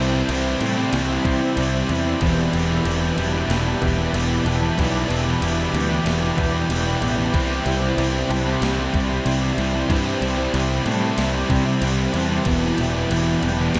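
A punchy, overdriven fuzz bass sits up front in this brooding, melancholic shoegaze and dream pop excerpt at 94 BPM in E minor, moving between Cadd9 and Em7 beneath thick fuzz guitar, two overdriven electric guitar riffs (one warm and trailed by reverse reverb, the other dark, double-tracked and very quiet), a boxy, shimmering fingerpicked twelve-string acoustic with octave doubling, chorus and analog delay, and a bright, detuned sawtooth pad, while a thumpy, tape-warm 80s drum machine with gated reverb on the snare joins at 0.3 s and a huge ambient reverb drenches the whole mix in a dreamy haze.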